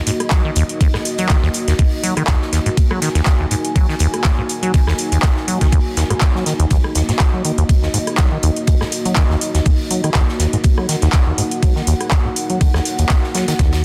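A driving 4/4 groove at 122 BPM with a light swing on the sixteenths anchors this raw acid house cut, built on a thumpy, up-front electronic kick that enters at 0.3 seconds, an overdriven analog drum machine supplying handclaps, rim clicks and metallic hats, and a low-tuned acoustic kit with a fat, gritty snare and high-passed hats pumping in a stone-room ambience. Over this, a squelchy, resonant sawtooth acid bass riff with filter sweeps and digital delay sits up front and pumps with sidechain compression, while a deep, detuned analog pad holds moody sustained chords with chorus and a slow attack. The whole excerpt stays on Eb minor, its dense, heavily limited master giving it a dark, relentless push.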